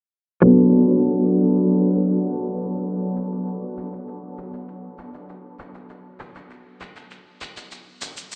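A straight 4/4 pulse at 99 BPM carries this brief, wistful sunset chillout fragment in B minor, cut from a longer piece and resting on a single Bm7 chord. From 0.4 to 8.4 seconds a dark, clean, picked hollow-body archtop guitar sits up front, its accompaniment passed through a low-pass filter, diffuse ambient delay and a filter sweep. An electronic, layered shaker with overdrive, re-recorded in a large room, sits far lower in the mix, and a huge ambient reverb with an 8.4-second tail soaks everything in a dreamy, filtered haze.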